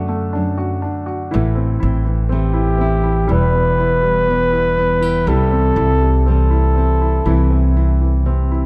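Acoustic folk-pop ballad at a slow 61 BPM in 4/4, heartbroken and reflective, cut from a longer piece, with a dark, breathy flugelhorn solo carrying the melody up front in a jazz style with vibrato until 8.2 seconds. Beneath it, a warm, fingerpicked nylon-string guitar with fresh strings, a soft, mellow felt-muted upright piano playing intimate arpeggios, and a woody pizzicato upright bass sitting prominently in the mix move through D/F#, Am, Em, C and Am/C. The close, detailed miking and light reverb give the sound an immediate, intimate presence.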